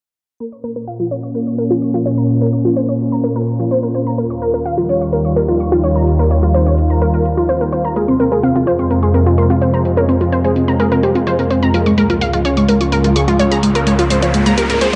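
This excerpt of dark, cinematic melodic techno in Bb dorian opens at 0.4 seconds with a bright, punchy unison pluck spinning arpeggios through a delay, its detuned sawtooth tone undergoing a filter sweep, alongside a dry, analog electronic hi-hat at 127 BPM in a straight 4/4. Just after, a thick, detuned sawtooth pad settles in with slow-attack sustained chords, sitting up front with a shimmer of chorus as the harmony moves from Bbm to Ebadd9, Fm and Db. At 8.0 seconds a bold unison lead takes the melody, its mellow sawtooth and triangle blend weighted by a sub octave and trailed by digital delay. An electronic riser joins at 13.0 seconds. The whole mix sits in a huge ambient reverb with a dark, low-pass filtered production that rounds off the top end.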